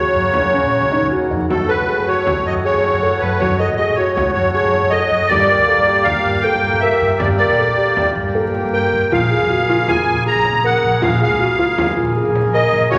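A shimmering musette accordion sits up front with the melody, its reedy, mid-forward tone carrying this urgent, restless piece of contemporary chamber music in an uneven 5/4 metre at 158 BPM. Beneath it, a hand-pumped harmonium holds sustained chords with a breathing, nasal quality, while a felt-muted upright piano plays soft, boxy arpeggios whose thick felt and audible action noise give them an intimate, mellow darkness. A pizzicato upright bass with steel strings supplies a woody, thumpy low end, and a deep, large frame drum played with soft hands enters at 0.3 seconds, very quiet and set in a small-room sound. After a brief opening on Gb, the harmony moves to Gbmadd9 at 1.5 seconds and Gmadd9 at 5.3 seconds before settling on Bbm7 at 9.1 seconds. A wet concert hall reverb and a layer of vinyl crackle colour the whole recording, which is cut from a longer piece.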